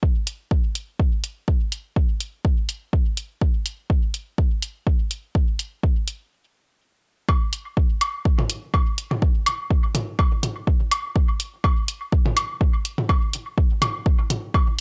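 Hazy and cavernous, this techno excerpt moves at 124 BPM in 4/4 with a 55% swing on the 16ths, built on an up-front, deep, layered electronic kick drum and a tape-warm analog hi-hat that sounds re-recorded in a small room. After a stop from 6.3 to 7.3 seconds, electronic woodblock and toms enter, layered and overdriven, with sidechain pumping and dub echo. The sound stays dry, with little reverb.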